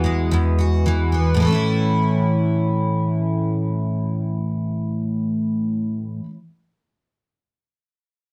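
A carefree, heartfelt pop fragment in free time, cut from a longer piece, carried entirely by a double-tracked steel-string acoustic guitar that picks out a full-bodied, jumbo-sized accompaniment placed up front. The guitar moves from an Eadd9 chord to A at 1.4 seconds and rings on until 6.4 seconds, its range running from E2 to F#4. A wet studio reverb with a short 0.5-second decay surrounds the playing.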